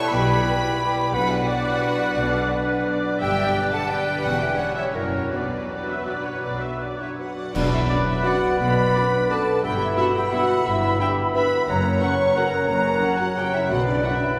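A dark, sweeping orchestral ballroom waltz in 3/4, taken with a flexible rubato feel and cut from a longer piece. A rich, smooth violin section carries the melody, with a clear second violin section, a hollow flute, a warm oboe and a bright, vintage-toned clarinet weaving second lines around it. Beneath them, a bassoon and a background viola section fill out the accompaniment, a lush double bass section and cello section hold the bass, a very quiet concert harp rings out arpeggios, and a mellow French horn section sustains chords from 0.4 seconds. Cymbal swell, clash cymbals and concert bass drum arrive at 5.3 seconds, and a band accent at 7.5 seconds opens the second half, where timpani, a tight trombone section and distant trumpet stabs join. The harmony moves through B minor, G and F#7 before settling back on B minor, and the whole ensemble sits in a long cathedral reverb that lends it a grand, church-like space.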